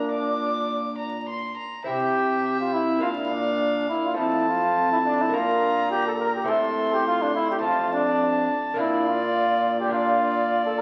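From the first moment, a dark cornet carries the melody of this festive, stately renaissance-style consort dance, heard here as a portion cut from a longer piece. Its light vibrato sounds distant and roomy, yet it sits up front, with a rich violin played by one player also up front alongside it on a high second line with a reedy, gut-string, period tone heard close. Beneath them, a fingerpicked lute on double nylon strings gives delicate, acoustic accompaniment, some strings doubled at the octave. A clear trombone, also distant and roomy, holds the bass in its low register. All four parts play throughout, moving in a steady, straight metre through a short opening phrase and a longer repeat starting at 1.9 seconds, with harmony passing through Bb, C, F and Am. A wet recital hall reverb surrounds the ensemble, and the sound of a very old 78 rpm record, with its crackle, gives the whole an aged patina.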